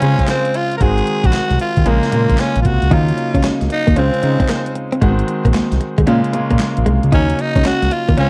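R&B in a new jack swing style at 114 BPM with swung sixteenths, this punchy, slick excerpt sets a breathy, raspy tenor saxophone melody with slapback echo over bright grand piano chords, a fat, saturated analog bass and an up-front 80s digital drum machine of thumpy kick, handclaps, hi-hat and a gated-reverb snare, while a clean, direct-recorded electric guitar joins at 2.9 s with a picked riff soaked in lush chorus, all cycling through Dbmaj7, Ab7, Bbm7 and Ebm7 in a dry, close 1970s-style studio sound.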